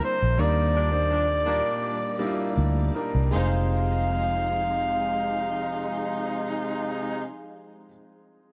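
Light reverb and a studio ambience give this short soul excerpt a close, polished sound, and its mood is smooth and silky. It sits in F dorian at roughly 77-87 BPM in a straight 4/4, and the tempo slows over the first 3.3 seconds as the harmony moves from Ebmaj7 to Fm7. Up front, a vintage flugelhorn carries the melody with scooped notes and analog delay, while a dark, foam-muted fingered electric bass sits round and punchy beneath it. A baby grand piano accompanies with an intimate, natural tone, long sustain and audible action noise, and a clear horn section adds vibrato-tinged stabs in a pop style. Behind them a soft string machine holds warbling sustained chords through an ensemble chorus, and from 3.3 seconds a lush, bowed violin section joins with a second line.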